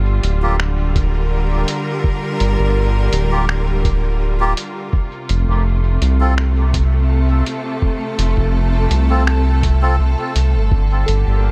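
Deep and hazy, this ambient dub fragment rests on lush, bowed strings holding sustained chords over a round, dark analog bass placed up front, while a muffled, tape-warm sampler kit of finger snaps and hi-hat carries dub echo and studio reverb and a thumpy, pitched-down electronic kick sits in studio reverb, a reedy, breathy melodica adds echoing stabs, and a soft FM bell arpeggio with chorus and phaser surfaces only at 11.1 seconds.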